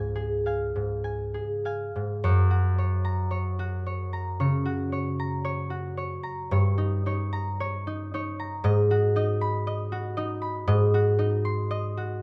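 Peaceful and serene, this brief excerpt of a classical solo concert harp piece moves in a rubato 4/4 at 50-60 BPM in F# major, tuned to A4 = 439 Hz, its warm, ringing, fingerpicked tones sitting up front under close, detailed microphones with light reverb as it opens on C#, settles onto F# at 2.2 seconds, and passes through D#7/G, G#m7 and G#7.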